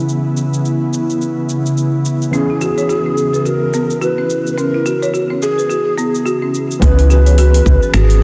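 Meditative organic downtempo with a swung feel, where a barky, overdriven tine electric piano with tremolo and a filter sweep sits beneath an ethereal, detuned pad and afro-pop finger snaps, metallic hi-hat and shaker, before a breathy, hollow Native American-style wooden flute and a rustic soft-mallet marimba with 12-bit sampler grit arrive at 2.3 seconds, and a round, dark FM bass joins a deep electronic kick at 6.8 seconds as the pad falls away, the whole set in a lush hall reverb.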